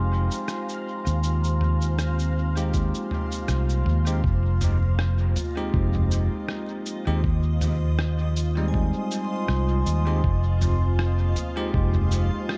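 A punchy, up-front fingered electric bass with an envelope filter and tube saturation anchors this deep, hazy ambient dub excerpt at 80 BPM in F minor, its swung sixteenth-note feel resting on an Fm7 chord beneath a cloudy, detuned granular pad that blurs the sustained harmony in its own reverb. A bell-like, clean tine electric piano adds bright stabs and a ringing, metallic vibraphone played with medium hard mallets and fast motor vibrato arpeggiates in the background, both trailing dub echo. Muffled, pitched-down sampler-style cabasa, rim click and toms with dub echo arrive at 0.3 seconds, joined by a thumpy electronic kick at 2.7 seconds, all set in light reverb over a layer of vinyl crackle.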